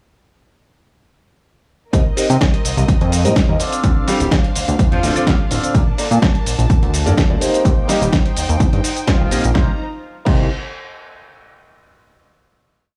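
Filtered disco house at 126 BPM in C dorian, a groovy, sensual piece with a light 16th-note swing that drops straight in at 1.9 seconds and moves through Cm7, Dm7, Bbmaj7 and Eb6 before settling on a final Cm7 chord at 9.6 seconds. An up-front, punchy electronic kick drives a four-on-the-floor pulse, joined by a dusty, sampler-style kit whose gritty snare, shaker, open and closed hats and crashes carry a programmed backbeat with sidechain pumping. A fat, nasal analog bass with tube saturation plays a funky syncopated line with sidechain pumping. A clear, intimate baby grand piano plays a rhythmic chord riff in drop-2 voicings, its audible action noise colored by phaser, 12-bit sampler grit and pumping. Behind it, a veiled, con sordino string section holds a bowed pad, while from 4.1 seconds a horn section with light vibrato and octave doubling adds short answering phrases through tape echo. 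The whole has a dry, gritty hardware sound with transformer saturation and a touch of studio ambience.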